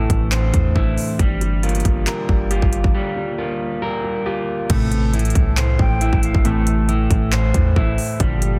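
Eerie and brooding, this half-time trap excerpt sets a low-passed grand piano and a dark, slightly broken-up electric guitar playing filtered, delayed arpeggios over a boomy 808 bass and an up-front trap kit with a hard-clipped kick, crisp hi-hats, handclaps and crash, while a deep, detuned pad holds chords in the background until 4.7 seconds, when glossy chorused polysynth stabs enter and an airy, distant flute adds a brief delayed line at 5.8 seconds.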